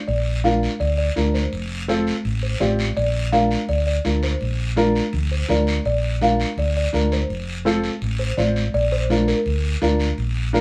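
A straight 4/4 cumbia pulse drives this short, sunny clip, cut from a longer piece, with congas and guiro entering at 0.1 seconds alongside the bass. The fingered electric bass sits up front with a dark, round, punchy amped tone, spanning F1 to D2 in the low register. The high-tuned congas, played with soft hands, stay in the background with a thick-skinned, vintage, band-limited character, while the guiro adds a raspy, compressed, saturated edge. A folk marimba with soft mallets carries the melody from the very start, its hardwood bars sounding woody, dry, rustic and airy in the range around Bb4 to F5. An upright piano joins at 0.4 seconds as up-front accompaniment, with a warm tone and short sustain. The band plays live together in a moderate studio room, giving the joyful groove a live, in-the-room feel.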